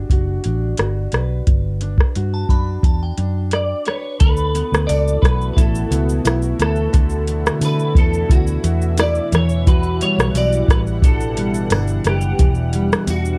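A full-bodied, fingerpicked acoustic guitar with a lush, warbly chorus opens this hazy, nostalgic indie-pop excerpt, alongside a round, foam-muted vintage electric bass and an up-front, overdriven rhythm box with a deep kick, metallic hats, rim click and shaker. A crystalline FM synth bell with phaser and analog delay appears briefly at 2.3 seconds. A bright, twangy clean electric guitar carries the melody from 3.5 seconds, joined by a thick, detuned sawtooth unison pad at 4.7 seconds and a very quiet, jingly tambourine, while light reverb and a dark, warm production color the Gmaj9, D69 and Em9 chords.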